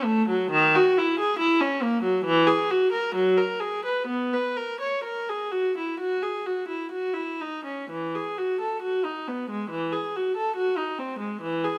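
In a flowing, rubato 4/4, this radiant fragment of a baroque-style classical suite movement features a lone bowed viola with a nasal, reedy gut-string tone in period style, placed up front and ringing through a stone room's reverb as it shifts to a new key centre at 7.9 seconds.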